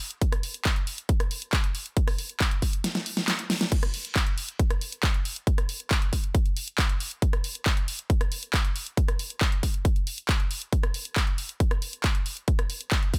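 A dry, up-front mix carries this short, driving and euphoric trance drum passage in a straight 4/4, cut from a longer piece. A layered big-room dance drum kit lays out crash cymbal, handclaps, hi-hat, rim click and a huge snare, joined at 0.2 seconds by a punchy electronic kick drum. The kick drops away from 2.8 to 3.7 seconds for a drum fill before returning to push the groove to the end.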